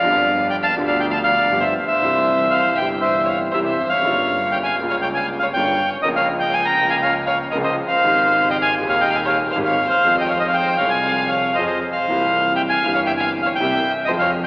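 A rubato 4/4 pulse around 120 BPM carries this tense, sultry tango excerpt, where a reedy, dark bandoneon sings the melody up front, a rich bowed violin weaves a second line with vibrato and expressive portamento, a clear concert grand piano with deep bass supplies the accompaniment, and a smooth, boxy bowed double bass anchors the low end, all bathed in a long church reverb and colored by vinyl crackle and an AM radio sound.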